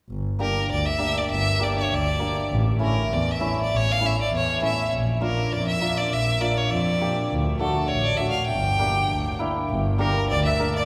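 A smooth, boxy bowed double bass opens this bittersweet yet festive klezmer excerpt at 0.1 s, moving at 100 BPM in a straight 2/4 in G dorian sharp4 through Gm, A, Bb and D. At 0.4 s a focused violin with vibrato takes the melody up front, though set at a distance, while a ringing hammered dulcimer accompanies, all resonating in a church or concert hall with a long cathedral reverb. At 10.0 s a metallic, close-miked steel pan played with hard rubber sticks adds a dry second line in the background.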